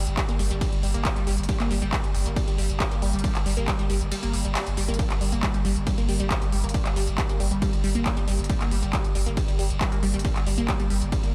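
A straight, driving 4/4 pulse at 137 BPM anchors this hypnotic peak-time techno cut in G minor, where a punchy, tape-warm electronic kick pounds from 0.2 seconds but drops out between 4.1 and 5.0 seconds, a drum kit of handclaps, smooth hats and ride cymbal keeps time, a deep, saturated sub bass holds G1 with overdrive, low-pass filtering and sidechain pumping, and a bright, detuned sawtooth unison pluck repeats a riff between G3 and Bb3 through phaser, analog delay and its own pumping, all over a single G minor chord in light digital ambience.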